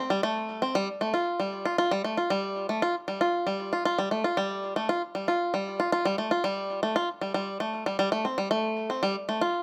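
Folktronica at 116 BPM in a straight 4/4, this short excerpt cut from a longer piece carries an autumnal, intimate mood. A lone bluegrass banjo plays solo from start to finish across the 9.6 seconds, sitting in a compact range from G3 to F4. Picked with fingerpicks, its acoustic tone is mellow yet twangy, with a percussive bite that keeps it up front in the mix. A digital delay trails the banjo's notes, lending a subtle electronic sheen to the folk instrument. Moderate studio reverb gives the sound a modest sense of room, keeping the performance close and personal.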